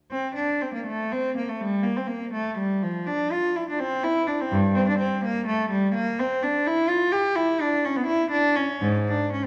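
A worn, warbling cassette sound with drifting pitch wraps this brief passage from a longer piece, set in a reverberant recital hall. A single bowed cello, up front and close, plays alone in a baroque-style suite movement in 6/8 with free rubato, its gut-string tone reedy and rich. The mood is grave and introspective, the line ranging from G2 to G4 over about 9 seconds.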